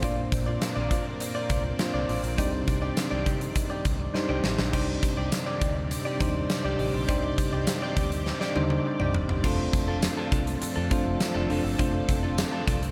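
A straight 4/4 pulse at 102 BPM drives this short, uplifting and nostalgic piece of 1980s-style pop, carried by a huge arena drum kit up front with a punchy kick, fat snare, bright cymbals, tambourine and toms, soaked in gated reverb. Underneath, a vintage muted fingered electric bass sits dark and round, holding down the low end. Soft electric-piano-like synth keys with chorus supply mellow, decaying accompaniment over Bbadd9 and Cmadd9 harmonies, while a vintage string machine adds sustained sawtooth chords with ensemble chorus in the background. A clean, compressed electric guitar picks a riff further back, treated with lush chorus and delay. Drum fills arrive at 4.1 s and 8.3 s, and the music settles onto an F6 chord in F major at 9.4 s.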